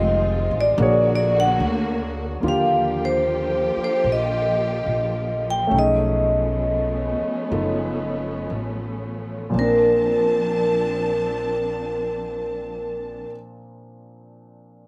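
This dry recording was captured outdoors with little reverb, and this excerpt from a longer piece is an intimate, late-night jazz ballad in Bb major, swung in 4/4 at 56-75 BPM. Up front, the metallic, ringing vibraphone carries the melody with medium hard mallets and slow motor vibrato, taking a solo over the opening 2.4 seconds before the tempo slows down through 9.5 seconds. Beneath it, a warm concert grand piano with deep bass, long sustain and audible action noise accompanies, a distant, lush bowed string section sustains chords with vibrato and portamento, and a woody pizzicato upright bass anchors the harmony, with the piano the last to sound at 14.9 seconds.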